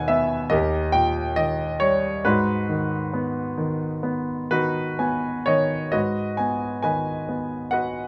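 A worn, up-front concert grand piano with deep bass and short sustain opens this wistful, reflective classical fragment cut from a longer piece, playing a lyrical solo in G# minor at a rubato 61-71 BPM in 4/4 across a range from D#2 to G#5, moving from G#m/D# to D# and then G#m7, adding a fill between 4.5 and 5.9 seconds before shifting into a new section, all set in a moderate small-room reverb.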